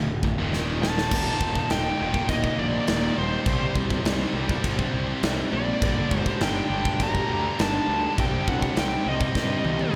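The big rock drum kit stands out most, acoustic and up front in a big room, with a punchy kick, a medium-tuned snare, toms, and bright crash and china cymbals, entering at 0.2 seconds and rolling through fills near the start and again at the close. This heavy, dark heavy metal passage moves at 102 BPM in a straight 4/4, cut from a longer piece. Two distorted rhythm guitars sit in the background riffing from the outset, one heavy and bright, the other scooped, while a fuzz-laden electric bass growls beneath them with a direct, amped bite. From 0.8 seconds a warm lead guitar carries the melody high above, colored by slapback and tape echo, as a darker second lead traces a lower line behind it with its own tape echo. Chords shift through Eb5, C5, G minor and C minor, and a lush hall reverb gives the whole band a big arena sound.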